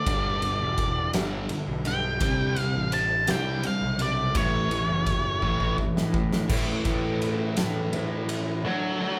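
Restless and anthemic, this short cut from a longer quiet-loud alternative rock piece moves at a slow 56 BPM in 6/8, with a dark, up-front octave-fuzz lead guitar soloing over Gadd9, Csus2 and Aadd9 chords until 6.5 seconds, while a boomy, gritty, low-tuned drum kit with a fat snare and dark cymbals pumps in a big room and plays a fill from 5.4 seconds. A growly fuzz-overdriven picked bass joins two background rhythm guitars, one bright and compressed and the other sludgy and overdriven, as a very quiet tonewheel organ holds key-clicking chords through a fast rotary speaker. The band sounds live in one large studio, with the bass, the bright guitar and the drums stopping by about 8.6 seconds as the harmony lands on D.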